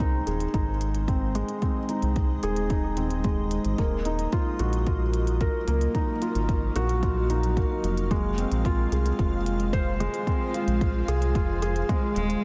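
A felt-muted upright piano sits up front in this moving, hypnotic piano and strings electronica, its soft, intimate riff carrying audible action noise and softened by a low-pass filter, delay and shimmer reverb. Beneath it, a round analog bass blends sawtooth and sine tones with ring modulation, dark and evolving, with sidechain pumping that ties it to the beat at 111 BPM in a straight 4/4. An overdriven, layered electronic kick drum gives a deep pulse until 12.0 seconds, while crisp, tape-warm electronic hi-hats, re-recorded in a large room, sit low in the mix. A cloudy granular pad fades in with detuned, blurred sustained chords, treated with analog chorus, pumping and shimmer reverb, as the harmony moves from Ab to Ebmadd9 and then Fm. At 12.2 seconds a rich bowed cello arrives on a single note with vibrato and portamento, just as this cut from a longer piece closes, all steeped in a dreamy, reverb-soaked ambience.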